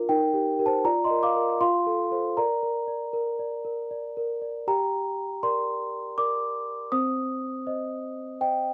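In a gentle, straight 3/4 at 80 BPM, this dreamy, tender classical lullaby excerpt features a solo celesta, bell-like and sweet with soft felt hammers, playing up front from C4 to Eb6 across chords moving from Eb through Bb/F, F and Bb to Gm at 4.7 seconds and Cm at 6.9 seconds, captured in a dry, close 1970s-style studio sound.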